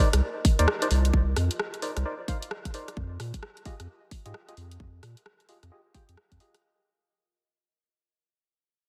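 Light reverb and a digital ambience frame this soulful, skippy UK garage excerpt, a two-step groove at 131 BPM in 4/4 with a 62% swing on the sixteenths. A tight, tape-warm electronic kick sits up front alongside a deep, thick sub bass with a fast attack, entering at 0.1 seconds and carrying the low end. A layered garage kit of hi-hat and rim click supplies the skip. Dark, hollow organ-like stabs with chorus and delay punctuate the bar and move under a filter sweep, while a cloudy granular pad, blurred and mellow, breathes with sidechain pumping far in the background. The harmony moves from Cm9 to Fm9 at 3.0 seconds, and the pad and the whole passage fade out as this fragment of a longer piece closes at 6.6 seconds.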